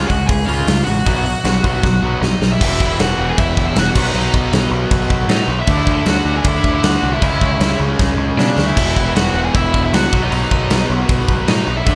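Punk rock at 156 BPM, aggressive and raw, this excerpt drives forward with a dark, high-gain lead guitar carrying the melody over two bright, distorted rhythm guitars playing riffs in the background. A growling, overdriven picked bass adds punch beneath, while a big acoustic rock kit sits up front with a tight kick, medium-tuned snare, hi-hat and crashes, firing off drum fills at 1.8 and 8.0 seconds. The sound is dry and close, shifting at 2.6 seconds into a longer passage built on chords such as E5, B, D and C#m.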